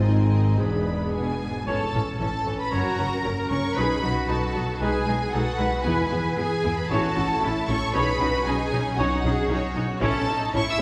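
Cinematic heroic adventure score in A lydian at 115 BPM, heroic and soaring, with a lush violin section carrying the melody over a second violin line, vibrato violas, a rich cello and double bass foundation, and ringing harp arpeggios in the background, while a clear clarinet and bright trombones sound only in the opening 1.4 seconds, dark, distant French horns sustain chords, and mellow trumpet stabs enter at 1.7 seconds, all heard from further back in a reverberant scoring stage.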